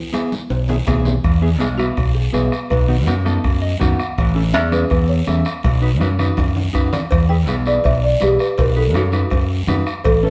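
A straight, joyful cumbia groove at 164 BPM in 4/4 and E major rolls along on a distant, soft-beater bombo, ringing congas in the background and a raspy, close guiro, while a bright, up-front fingered electric bass drives the dance feel and metallic cowbell and timbales ring out briefly at the start before returning at 7.1 seconds. Over this, a woody, rustic marimba played with soft mallets carries the melody and takes a solo from 1.2 seconds, supported by a dark, clean electric guitar that adds a short fill at 3.4 seconds. The band sounds live in one stone room with moderate reverb, and the chords move through E, B7, A and B, return to E and then move to B again in this excerpt cut from a longer piece.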